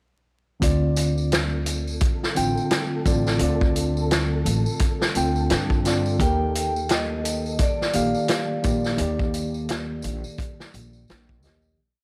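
A punchy, mid-forward vintage drum kit sits up front in this dark, melancholic trip hop piece at 86 BPM in D phrygian, its looped breakbeat with edits swinging over a woody, growly upright bass playing a dub-style line with tube saturation and a reedy electric piano holding spread chords with syncopated pushes through harmonic tremolo, moving from Dm7 to Ebmaj7. A bright, band-limited tambourine and a flickering, grainy held high note in the background fill out the groove, while a metallic, ringing vibraphone enters at 6.2 seconds with motif-based call phrases trailed by tape echo. The dry, gritty recording carries vinyl crackle, and the whole piece fades out from 8.1 seconds to its close at 11.8 seconds.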